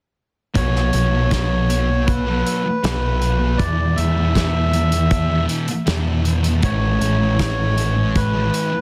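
A dry, dense and heavily limited mix opens this hazy, blissful shoegaze and dream pop excerpt at 79 BPM in a straight 4/4, moving through Bm7, E7 and A. A dark, fuzz-drenched guitar riff with analog chorus sits up front beside a growling overdriven picked bass, while a very quiet, compressed clean electric guitar traces its own riff underneath and a loose small-room indie kit drives hi-hat, tight kick and medium-tuned snare. Over the top, a reedy, breathy melodica with a vintage, band-limited tone sings a short melody through analog delay from 0.6 seconds.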